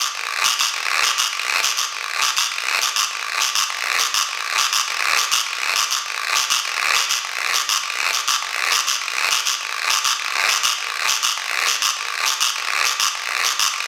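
Sunny and festive, this Latin fragment at 203 BPM in a straight 4/4 features a raspy, acoustic guiro placed close, dry and up front throughout, set within the wet reverb of a church or concert hall, with a new section arriving at 6.7 seconds.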